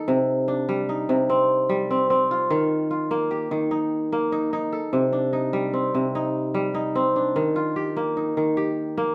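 Bathed in a wet studio reverb and captured live in one room, this hypnotic, flowing snippet of West African traditional music features a solo acoustic kora, fingerpicked, ringing and crisp up front, moving between Cm and Eb in C dorian in a straight 12/8 at 99 BPM across two short sections that turn over at 4.9 seconds, before being cut off at 9.1 seconds from a longer piece.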